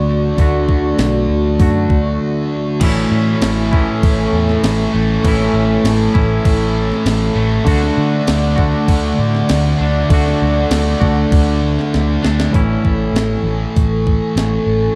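Soaked in a wet plate reverb, this dreamy shoegaze and dream pop passage, cut from a longer piece, feels blissful and wistful at a steady, straight pulse. A deep, moody analog pad built from detuned square, sawtooth and triangle waves with a sub octave and a moving notch holds sustained chords under chorus, while a thick fuzz guitar grinds out a dark riff through distortion and lush chorus. A twangy, clean electric guitar picks its own riff with reverse reverb, and a vintage foam-muted electric bass gives a round, amped low end. A crisp 8-bit drum machine with a thumpy kick, medium-tuned snare, hi-hat and crash brings a tape-tinged, small-room character, pausing for a break just before a tight, bright, double-tracked distorted guitar joins in the background at 2.8 seconds. The harmony moves from Dmaj7 to Amaj7 and D, and a drum fill at 11.9 seconds leads back to Amaj7 as that background guitar drops out.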